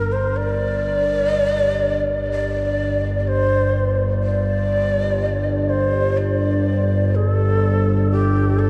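A breathy, close-miked bamboo shakuhachi with vibrato and tape echo carries the melody over a low, evolving analog sawtooth and pulse-wave drone with chorus from the very start of this desolate, ominous dark ambient fragment, all steeped in a huge 9.0-second reverb and the warbling pitch drift of worn cassette tape.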